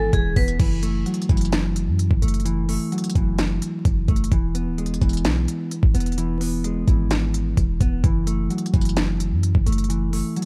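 Menacing and hard-hitting, this half-time trap cut from a longer hip hop piece runs at 129 BPM in F# minor, its digital ambience carrying a layer of vinyl crackle. It opens on a brief flash of sound in the first 0.6 seconds: a metallic, ringing vibraphone struck with hard mallets, its slow motor vibrato touched with delay, alongside a woody, FM-style synth pluck set in the background with chorus and delay, while a distant, very quiet chamber string section holds bowed chords beneath. From 0.6 seconds the groove settles in, moving from F#m7 to E and back to F#m7. An up-front, clean, fingered electric guitar in a dark register carries the accompaniment throughout. The clean 808-style bass is deep and boomy, a sine tone with a fast attack that decays, reaching down to D1. The trap kit sits up front with a knocking kick, sharp snare, crisp hi-hats and crash cymbal, its produced electronic sound carrying a tape-warm edge.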